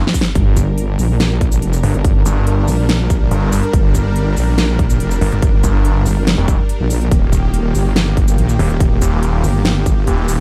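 Heavy wobble dubstep in a half-time feel, this short cut from a longer piece feels chaotic and aggressive, with a dark digital ambience. A snarling, growling distorted saw bass sits up front from the very start, its detuned unison tone overdriven and compressed, while a drum fill opens the first 0.4 seconds. The big-room dance kit brings a huge snare, crisp hats and shaker, anchored by a punchy, layered electronic kick with a tape-warm character. From 0.4 seconds a wobbling, saturated wobble bass joins, heavy yet mellow under its chorus and overdrive, and lush supersaw chords sustain above with sidechain pumping. The harmony rests on G minor before shifting to E-flat at 7.1 seconds.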